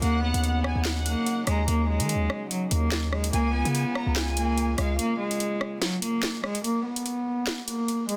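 Ominous and cold, this half-time drill excerpt at 145 BPM pairs a reedy, gut-string solo cello melody, filtered and echoed by digital delay, with a lush bowed violin section's delayed second line and a dark French horn section's sustained chords in the background, all over a punchy, hard-hitting 808-style bass and an up-front electronic drum kit of metallic hi-hats, handclaps, rim clicks and a sharp, softly clipped snare, moving from Ebm7 to Db before the violins and bass break off at 5.0 seconds, the horns fall away at 6.6 seconds and the cello and drums carry on alone over a dry, dense, heavily limited mix.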